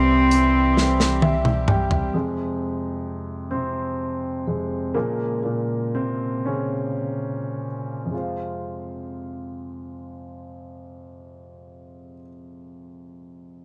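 Set in studio ambience, this dramatic, melancholic six-eight pop ballad in F harmonic minor moves at 34-44 BPM, opening with a floating, pure sul tasto cello melody up front over an open, deep-bassed grand piano, distant reedy gut-string ensemble chords and a snappy, metallic FM bass, joined at 0.3 s by a polished, airy acoustic drum kit whose fill runs alongside a piano fill up to 2.1 s, where the piano carries on alone in a slowing solo over Fm and Db chords before settling back on Fm at 8.1 s.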